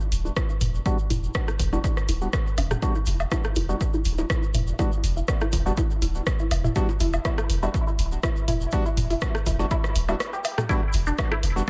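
A grainy tube shaker opens this sparse, hypnotic minimal techno excerpt, joined almost at once by a deep, pitch-dropping sub bass that sits up front with tube saturation and sidechain pumping, and by an analog drum machine whose hi-hat and rim click carry tape echo. At 122 BPM in 4/4 with a light 16th-note swing, the piece rests on a single E minor seventh chord. A squelchy, resonant blip pluck riff between D4 and B4 arrives with phaser, lush chorus and analog delay, while a punchy electronic kick and an overdriven techno kit of cowbell, rim click, toms and woodblock enter at 0.4 seconds. A hollow, organ-like percussive stab follows at 0.9 seconds, roughened by 12-bit sampler grit, chorus and tape echo. Filter sweeps move across the arpeggio and stab sounds through to 10.7 seconds, with a brief break from 10.2 seconds giving way to a drop at 10.7 seconds, all within an echo-heavy mix with light reverb.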